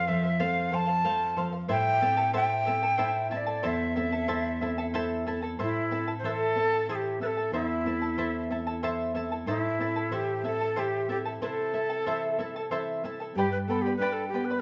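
A breathy large quena carries the melody up front, its woody, end-blown tone softened by vibrato and a gentle attack in this melancholic, earthy Andean folk piece in A minor, moving in a slow 6/8 at 62 BPM. A fingerpicked charango adds a shimmering sparkle from its double strings, while a thumb-plucked nylon-string guitar grounds the harmony with a classical touch and occasional finger squeaks, moving from F to A minor at 1.7 seconds and reaching G near 13.4 seconds. The trio plays live together in a large, wet studio reverb with a dull, rounded top end, and the piece shifts into a new section at 5.6 seconds before this cut from a longer performance ends.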